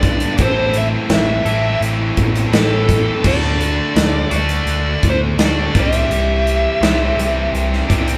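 A band plays live in a stone room, caught with moderate reverb that gives the short clip a natural, roomy weight. It is swaggering, gritty classic rock in A dorian, moving at 84 BPM in a straight 4/4 over chords of Am, D and C. A bright, double-tracked distorted electric guitar sits up front with a picked, overdriven riff, while a dark, smooth lead guitar carries the melody with its own overdrive. Underneath, an amped electric bass adds a round, punchy low end with a dark, overdriven edge. A big acoustic rock kit, also up front, drives the groove with a punchy kick, a medium-tuned snare, hi-hat and bright crash cymbals, all four parts playing together from start to finish across the 8.2 seconds.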